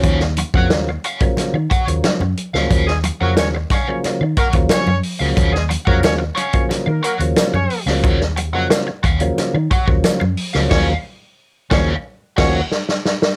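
A driving, hypnotic funk groove in straight 4/4, cut from a longer piece and captured as a dry home recording on cassette. A vintage drum kit sits up front with a punchy kick, medium-tuned snare, hi-hat and dark crash cymbals, its rolled-off top colored by cassette tape, while a foam-muted fingered electric bass supplies a dark, round low end. A biting overdriven guitar plays picked accompaniment through wah and harmonic tremolo, and a tonewheel organ adds full, clean stabs through a slow rotary speaker over an Ebm9 harmony. Thick-skinned congas played with hard hands stay in the background until 10.4 seconds, joined by a jingly tambourine, and a clear horn section with light vibrato enters at 2.9 seconds to carry a pop-style second line. The band hits an accent from 10.7 seconds, and a drum fill closes the clip alone at 12.7 seconds.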